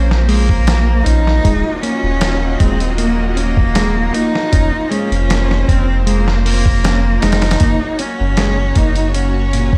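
A big sound system booming in a bare stone room frames this dark, hypnotic trip hop excerpt at 78 BPM in Bb minor, with chords moving from Bbmadd9 through Ebmadd9 to Gb. A rich, expressive bowed cello sings the melody with vibrato and portamento through tape echo, over sustained sawtooth string-machine cellos thickened by ensemble chorus and a mellow, clean electric guitar playing fingered arpeggios through digital delay in the background. Up front sit a round, deep dub sub bass with tube saturation and a gritty, compressed sampler-style drum kit with a thumpy kick, hi-hat and medium-tuned snare, entering at 0.1 seconds.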